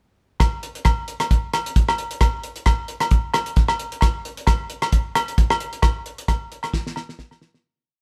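The sound is that of a band playing live in one room, with a light reverb around it. This is a short, joyful and danceable highlife groove in 4/4 with a gently swung sixteenth-note feel. A damped 70s drum kit sits up front, dry and acoustic with a rolled-off top, its fat snare and tight kick joined by hi-hat and rim click in a classic highlife kit groove. Agogo bells carry the bell time line on the low bell, ringing yet close and dry, sitting a little lower in the mix than the kit. The whole piece begins fading out at 5.8 seconds, and the drums close it with a fill from 6.7 seconds.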